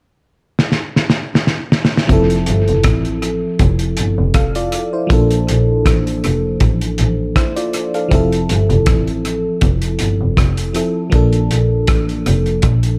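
This lovers rock reggae cut, taken from a longer piece, has a sweet, smooth mood and a gently swung 16th-note lilt. A cloth-damped drum kit opens with a fill from 0.6 seconds, its muffled, thuddy sound built from a fat snare, tight kick, rim click and hi-hat, with a saturated, gritty character, a rolled-off top and a touch of tape echo. At 2.1 seconds an FM electric piano and a double bass enter together. The piano has a glassy, bell-like attack and a full body with a noise layer, decaying after each note under a chorus effect. The bowed double bass, played sul tasto by one player, sounds soft-edged, pure and floating, with a somewhat distant quality, and its warmth anchors the low end. Drums, keys and bass all sit up front in a small room with light reverb, while the harmony rocks calmly between Fmaj7 and Bbmaj7.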